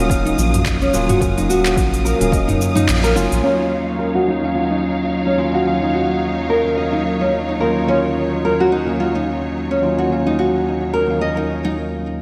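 Fingerpicked nylon-string guitar arpeggios, full-bodied and low-pass filtered with digital delay, ripple through this hypnotic organic downtempo excerpt over an up-front bell-like tine electric piano and bright, lush bowed strings that both pump with sidechain, while a round analog bass, a punchy overdriven electronic kick and a crisp-hatted organic electronic kit with cabasa, handclaps and toms hit a band accent at 2.9 seconds and fall away by 3.4 seconds, when a filter sweep begins on the guitar inside a wet, arena-sized hall reverb.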